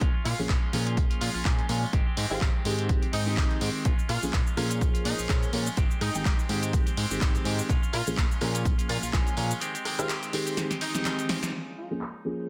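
A dense, heavily limited modern master with a dry, close sound frames this groovy, funky slice of filtered disco house, cut from a longer piece and set to a gently swung 4/4 pulse. An up-front electronic kick, re-recorded in a small room, drives the groove until 9.2 seconds, while a punchy analog drum machine supplies handclaps, hi-hat, rim click, shaker and a punchy snare, its hats and percussion pumping and muffled under a low-pass filter. A very quiet tambourine sits in the background, and a fat, detuned sawtooth bass with a filter sweep pumps beneath the kit until 9.5 seconds. A clean, twangy electric guitar picks out a riff, a dark, mellow grand piano with long sustain and a phaser comps through the Bbm7 to Abmaj7 changes, and a tight, bright horn section carries the melody in the background with dub echo, all three pumping and filtered. A drum fill arrives near the end and the band hits an accent at 11.4 seconds.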